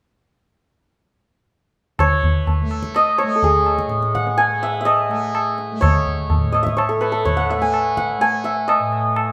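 Heard in a reverberant large studio with the players performing live together, this radiant, serene Hindustani classical fragment brings in, at 2.0 s, a bright, shimmering hammered santur carrying the melody up front, a softly plucked, buzzing tanpura drone beneath it, and a low-tuned, close and dry tabla with a short ring.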